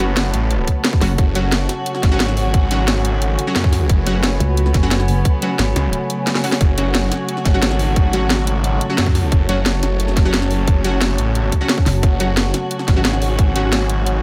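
Dark and mechanical, this excerpt of technical drum and bass runs at 177 BPM in F# minor, holding a single F#m chord throughout. An overdriven electronic kick sits tight and up front, entering at 0.7 s, while a layered kit adds a cracking snare and bright hi-hats, with a brief drum fill at 6.3 s. A snarling, detuned sawtooth bass growls under distortion and overdrive, joined in short bursts by a heavy, pulsing pluck wobble bass with chorus, its longest appearance running from 4.4 to 5.7 s. Above, a chamber string section bowed sul tasto holds sustained chords with light vibrato and an intimate closeness, breathing with sidechain pumping, while punchy orchestra-hit-like synth stabs ring out in the background through reverb and tape echo. A warbling, nostalgic lo-fi pad drifts on top with chorus, reverb and pumping, all set in a digital ambience.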